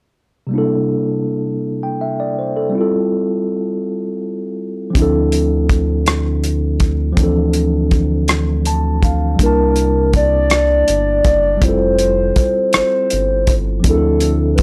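A slow six-eight R&B groove at 54 BPM sets a tender mood in this excerpt from a longer piece, with chords moving through C13, Fmaj9 and Dm9. A clean tine electric piano opens alone at 0.5 seconds, heard as if through its built-in speakers, and plays a short fill just before the second section. At 5.0 seconds a round, deep analog bass enters, dark and sustained, together with a soul drum kit of hi-hat, kick drum and rim click, its tight kick and rolled-off top captured in a snug booth with a pumping room sound. From 9.4 seconds a hollow, woody synth lead in a clarinet-like voice carries the melody, soft in attack with a warbling vintage vibrato, colored by chorus and analog delay. The mix is dry and close, with every part placed up front.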